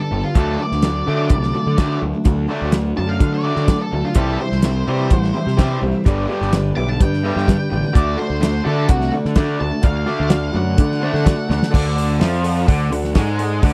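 A dry, close recording with a 1970s studio feel and little room sound frames this confident, swaggering stretch of classic rock in D mixolydian, moving at 127 BPM in a straight 4/4. Up front, a damped drum kit with a fat snare, tight kick and dark cymbals sits beside a round, fuzzed-out picked bass, while two bright, overdriven electric guitars drive the riff, one of them tucked into the background. Over this, an octave-fuzz lead guitar with a dark, distorted tone and slapback echo takes a solo from the start until 11.7 seconds, as the harmony moves from D through C and G back to D. A very quiet plugged-in steel-string acoustic guitar adds picked accompaniment with audible finger squeak, and from 4.1 seconds a metallic, jangly tack piano joins in the background. A drum fill at 11.5 seconds leads into a brief new section carried by the riff guitars, bass, drums and piano.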